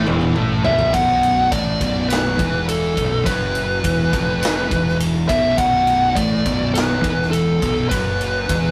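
A short stoner and doom metal excerpt opens on a drum fill from the big, naturally recorded kit, with bright cymbals and a tight kick, while a bright, double-tracked distorted guitar riff sounds only until 0.9 seconds. Throughout, two thick fuzz guitars, one dark and one warm, churn through a low riff in the background over a round, punchy fuzz bass, and at 0.9 seconds the harmony settles on a B5 power chord, giving an ominous, hypnotic pull. A dark fuzz lead guitar, entering at 0.6 seconds, carries the melody up front, and the whole take has the rough feel of a rehearsal room with moderate stone-room reverb.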